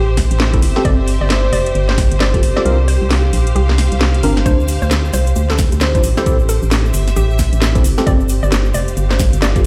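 An organ-like FM bass sits up front in this bouncy, soulful two-step UK garage excerpt, its dark, percussive notes pumping against the sidechain at 133 BPM with a swung 16th feel. A knocking electronic kick with studio reverb drives the groove and drops out from 2.7 to 4.5 seconds, while a layered garage kit adds a cracking snare and metallic hats. A worn, slightly out-of-tune tine electric piano plays stabs through a combo amp, colored by phaser and digital delay, over chords moving from Am7 and G9sus4 through C7sus4 and Dm7. Behind these, a lush bowed string section with vibrato also pumps, and a hollow square-wave pluck carries a mellow, detuned melody through chorus and tape echo in the background. A grainy egg shaker joins at 4.5 seconds, and the mix plays through a big sound system in a bare stone room.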